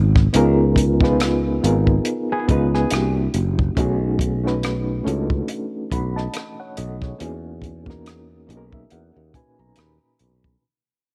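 Swung sixteenths in 4/4 drive this late-night, introspective neo-soul R&B passage, cut from a longer piece: a compact cocktail drum kit, dry and acoustic with a punchy kick, ticks out hi-hat and rim clicks, while a growly, bright fretless bass sustains beneath it. A reedy electric piano with fast tremolo, heard through its built-in speakers, carries the chords from C#9 to Emaj13, and a dark, compressed hollow-body jazz guitar slips in a brief fingered line with slapback echo at 2.3 s. The piano closes with a fill from 8.1 s as the whole passage fades out in a small room.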